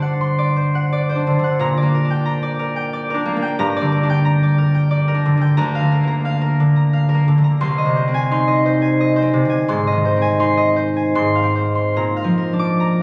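A ringing, fingerpicked concert harp sits up front in this mysterious, wistful classical excerpt in G minor. It moves in a rubato 3/4 at 71-92 BPM, ranging from low C2 to high D6 over shifting chords such as Gm, Bb/D and Ab, bathed in moderate recital-hall reverb with a phone-in-the-room intimacy.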